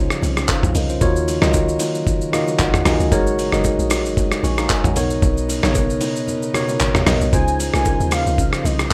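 Soulful and warm, this short amapiano cut moves at 114 BPM in 4/4 with a 16th-note swing, set in Db major. A bell-like, bright tine electric piano carries the chords up front, drifting through Dbmaj9, Ebm7, Ab7sus4 and Cbmaj9, and it plays a short fill around 2.1 seconds, while an airy, breathy pad with chorus sits very quietly beneath. The deep log drum bass is round and percussive with a fast attack and a dark decay, and a gritty, compressed sampler-style drum kit with a thumpy kick, medium-tuned snare, handclaps, rim clicks, hi-hat, shaker and toms drives the groove, joined by very quiet, hard-handed congas and bongos. The kick drops out between 6.3 and 7.3 seconds, and at 7.3 seconds a velvety, smooth synth lead with vibrato and chorus enters with the melody as the chords return to Dbmaj9. The mix is dry and rough, with the feel of a home demo.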